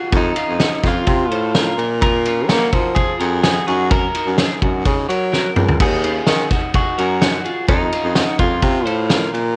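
A bright, clean electric guitar melody with subtle chorus and tape echo and a twangy twelve-string guitar playing arpeggios open this bittersweet, wistful excerpt of jangly indie pop, cut from a longer piece and recorded at home on cassette. A breathy baritone saxophone with vibrato carries the bass up front. A loose, roomy drum kit with a fat snare, punchy kick and dark cymbals plays a fill at 5.3 seconds over a chord cycle that begins and ends on F7.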